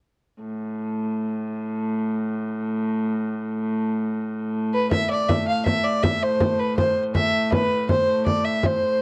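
Medieval dance in A minor at 161 BPM in 3/4, driving and ancient: a reedy hurdy-gurdy holds a plate-reverbed A2 drone from 0.4 s, a nasal, bowed fiddle with light vibrato enters at 4.7 s to carry a smooth melody between B4 and F5, and a close, dry frame drum struck with hard hands joins at 4.9 s, all heard in a small room through worn cassette tape whose warbly pitch drift lends this short excerpt an aged character.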